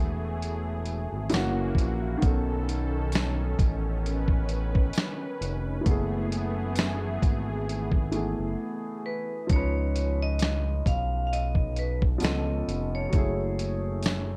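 A lazy swung groove in four anchors this reflective, nostalgic lo-fi hip hop excerpt. It is driven by a gritty, compressed sampler-style drum kit with a thumpy kick, fat snare and hi-hat, sitting up front with the sound of being re-recorded in a large room. A jingly acoustic tambourine joins from 1.3 seconds, distant and in the background, while a smooth synth bass blending sawtooth and square waves glides between notes with portamento, mellow and up front. A woody upright piano with long sustain carries the accompaniment through cassette-tape color, a low-pass filter and plate reverb, joined at first by a lush, detuned unison pad whose nasal, bright chords are thickened by chorus. During a short break, a metallic, ringing vibraphone played with hard mallets takes the melody from 9.1 seconds, with slow motor vibrato in a boxy small room, and the pad stops at 9.5 seconds as the harmony moves to C#9 and C#7b13. 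Jazzy extended chords such as F#m9, B9 and F#m11 give the whole a wistful color under light reverb.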